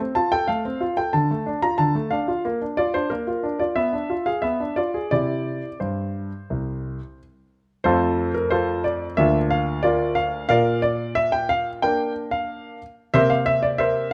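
Close, detailed microphones and light reverb place a clear grand piano up front, intimate enough that its action noise is audible and its short sustain keeps each note crisp. This cheerful, graceful classical-period sonatina moves at 91 BPM in a straight 4/4 in F major, tuned to A4 = 441 Hz, with the solo piano ranging from C2 to Bb5 across a passage cut from a longer piece. The opening phrase passes through Dm, Bb and a Bdim7 before settling on C, and a second phrase begins at 7.9 seconds, returning to F and moving through Bb/D and Bb to close on C5 at 13.1 seconds.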